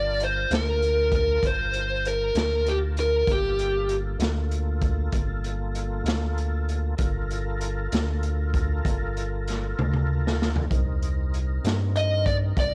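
A home cassette recording in a small room gives this brooding, mournful slow blues a gritty, close feel. It moves at 65 BPM in 12/8 with a straight feel in G minor, cut from a longer piece. A dark, overdriven electric lead guitar carries the melody up front, playing from the start until 4.0 seconds and then returning briefly near the end. Beneath it, a full tonewheel organ holds sustained chords with key click, chorus vibrato and a slow rotary speaker, while a rubbery, hollow square-wave bass with a resonant filter pluck bounces low and dark. A raw garage drum kit, with its punchy kick, medium-tuned snare, hi-hat and toms, pumps in the small room and plays a fill from 9.8 seconds that leads into the harmony's move from Gm9 to Cm7 at 10.7 seconds.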